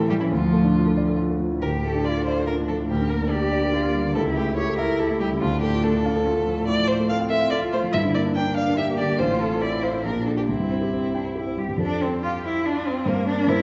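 A quick classical-period piano trio movement in triple time, spirited and graceful, in which a rich, up-front violin sings the melody with vibrato and expressive portamento, a dark, mellow grand piano gives smooth, vintage-toned accompaniment, and a bowed cello with warm vibrato and sliding portamento carries a second line from 0.1 s, the fragment cut from a longer piece and set in a moderately reverberant concert hall with softened highs.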